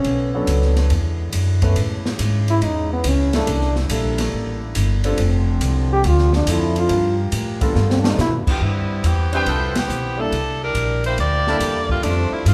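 A mellow, close-miked solo trombone with light vibrato carries the melody over sustained trombone-section chords, woody pizzicato upright bass, a dark-cymbaled jazz kit and an intimate grand piano in this joyful 140 BPM big band swing excerpt, until a drum fill at 7.8 seconds hands the tune to a clear saxophone section with vibrato at 8.5 seconds as the harmony settles into C major, with present trumpet stabs and a band accent at 9.7 seconds, all heard from further back in a reverberant large studio.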